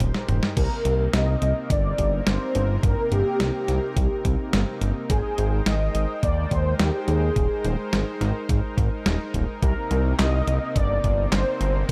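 A dry, close-sounding synthwave excerpt in C minor at 106 BPM, moody and nocturnal, opening with a 0.6-second drum fill. A detuned 8-bit drum machine, with its tape-tinged snare, handclaps, hi-hat, toms and crash, sits up front beside a thumpy electronic kick. A fat, nasal analog bass with a plucky filter anchors the low end, while a soft, smooth supersaw holds evolving sustained chords with a sidechain pump, moving between Abmaj7 and Cm7. On top, a round, dark synth brass carries the melody with vibrato, a filter sweep, chorus and digital delay.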